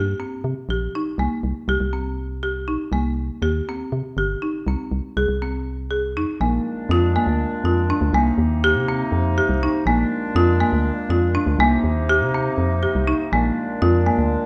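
A restless 7/8 pulse drives this contemporary chamber piece in C minor, counted at 243 BPM in eighths with a straight feel, and the clip is cut from a longer work. From the opening, a folk marimba struck with hard mallets spins arpeggios with a woody, rustic brightness, sitting up front beside a hollow, organ-like FM bass whose fast attack decays into a dark low end. The harmony moves from Cm7 to Gmadd11 before settling into a brief chordless stretch at 4.7 seconds. At 6.4 seconds a clear woodwind section enters with sustained classical-style chords touched by light vibrato, set a little behind the other two parts, as the progression rocks between Bb7 and Cm7. A moderate recital hall reverb surrounds the ensemble, lending the pensive mood a sense of space.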